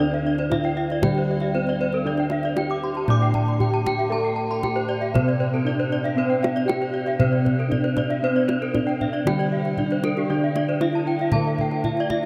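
Bronze metallophones and round, full bossed gongs ring out together from the very start of this ceremonial, brilliant Balinese gamelan passage in D slendro at 116 BPM, with a mellow, padded-mallet melody shimmering with paired-tuning beats over a horn-mallet accompaniment, two arpeggio lines (one struck with horn mallets, the other airy under wooden mallets), a gong bass line, and a tight, soft-handed kendang joining at 0.4 seconds, all carried in a huge, echoing reverb that makes the room feel vast.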